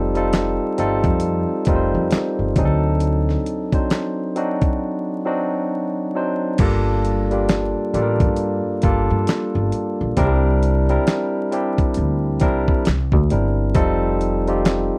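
A slow 67 BPM groove in 4/4 with a swung 16th-note feel anchors this smooth, soulful R&B and neo-soul passage in G minor, cut from a longer piece. The sampler-style drum kit, gritty and compressed, enters at 0.2 seconds and sits up front with a thumpy kick, fat snare, hi-hat, handclaps and crash cymbal. Beneath it, a pizzicato upright bass with steel strings gives a woody, dark low end, also close and forward. A bright, barky tine electric piano, lightly overdriven through a combo amp, carries the harmony from F9 and D7b9, through a break at 4.8 seconds, into Gm9 and C9 before coming back to F9. The sound is dry and intimate, like a 1970s studio session, with vinyl crackle lending a worn patina.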